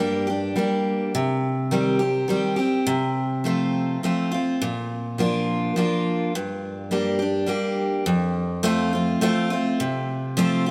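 A picked steel-string acoustic guitar carries this short country excerpt entirely alone, its bright, full-bodied dreadnought tone sitting up front with an audible finger squeak. The mood is dusty and lonesome, moving at 104 BPM in a straight 3/4 feel. The harmony circles through Gm, Cm, F/C and Bb before returning to Gm, and the passage shifts into a new section at 8.1 s as the chord moves to F. The guitar's range runs from F2 to G4. A wet plate reverb with a long tail places the listener further back in the room, lending the solitary playing a spacious, distant air.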